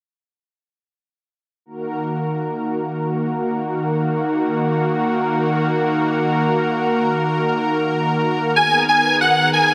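A lush, airy unison pad enters at 1.7 seconds with sustained chorused chords in Eb minor, and a huge, detuned supersaw melody bursts in with cassette-tape grit and dub echo at 8.6 seconds as the harmony shifts to Abmadd9, giving this soaring, euphoric free-time trance fragment a dense, heavily limited sound bathed in vast ambient reverb.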